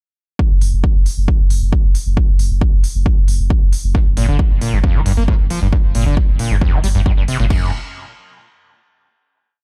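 The recording is dark and close, with almost dry air around it, as this short piece of driving peak-time techno pushes forward at 135 BPM in a straight 4/4 with a hypnotic pull. A heavy, overdriven electronic kick sits up front in a four-on-the-floor pattern from 0.4 seconds, joined at once by a deep, thick sine sub bass whose tube saturation and sidechain pumping leave a low rumble between the kicks. Further back, a programmed techno kit adds smooth open hats, a backbeat and crash cymbal, its layered sounds roughened by overdrive. At 3.9 seconds, as the harmony settles on G minor, a screaming acid line cuts in: a squelchy, resonant sawtooth riff with accents, slides and a filter sweep, bright and aggressive under distortion, lush chorus, tape echo and its own sidechain pumping. The groove ends at 7.5 seconds, giving way to a final chord.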